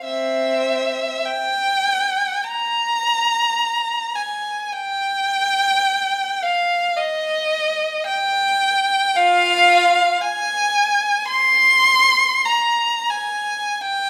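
Classical and meditative, this lonely passage for unaccompanied solo violin unfolds freely with rubato, its rich, bowed tone carrying vibrato and portamento as a single expressive player sits up front yet sounds distant within a recital hall's moderate reverb, spanning C4 to C6 across a brief 14.1-second extract from a longer piece.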